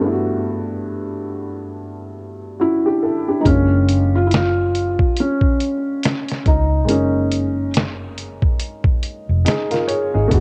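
A felt-muted upright piano carries a soft, thick-felted melody from 2.6 to 7.7 seconds, its action noise close and intimate over a woody, vintage upright piano that plays the chords through a low-pass filter and cassette tape. This dreamy, cosy lo-fi hip hop excerpt moves at 70 BPM in F# major with a swung 16th feel, shifting from Gmaj9 to F#maj9 at 3.5 seconds, where a round, foam-muted electric bass and a compressed, pitched-down sampler-style drum kit enter with a thumpy kick, fat snare and hi-hat. The home recording on cassette sits in a small room ambience.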